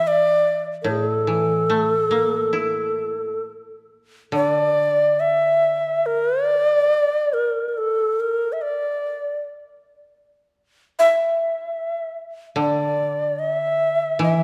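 Japanese traditional music, calm and austere, drifts in free rubato at around 65-77 BPM in 4/4, as a breathy, bright shakuhachi carries the up-front melody with vibrato, a crisp chiffing attack and reedy highs, while a woody koto played with fingerpicks accompanies from the start, falls away at 6.9 seconds and returns at 12.6 seconds, all set in a wet concert-hall reverb in this short section of a longer piece.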